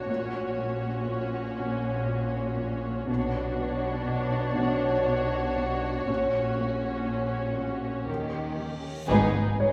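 Drenched in the reverb of a church or concert hall, this uneasy, tense cinematic suspense cue in 3/4 opens on veiled, con sordino strings: muted violins carry the melody and a second line, while violas give lush accompaniment and cellos and double basses hold the bass beneath a second cello section playing a riff. A huge, dark reverse cymbal builds from 8.4 seconds into an impact at 9.1 seconds, where a distant, roomy French horn section sustains chords and very quiet taiko and dry, close timpani land an accent. At 9.6 seconds a single open, long-sustaining baby grand piano note rings out just before the excerpt is cut off.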